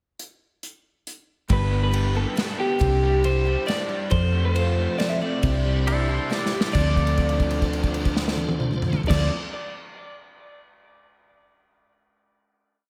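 Folk rock and heartland rock with a reflective, dusty mood and a 3/4 groove, this short piece opens with a pickup bar on an unplugged drum kit played with bundle sticks, its cymbals dark and kick tight. The band enters at 1.5 seconds for a pre-chorus. A twangy, slightly broken-up electric guitar through a small old amp carries the motif-based melody over a round, up-front hollow-body bass, shimmering picked twelve-string acoustic strumming, double-tracked overdriven semi-hollow arpeggios with analog chorus, and a piping tonewheel organ holding chords through a slow rotary speaker with key click. A clean pedal steel guitar played with fingerpicks and slide adds a second line from 5.9 seconds, and a drum fill leads into a final held chord at 6.7 seconds, all set in a dreamy mix soaked in lush hall reverb.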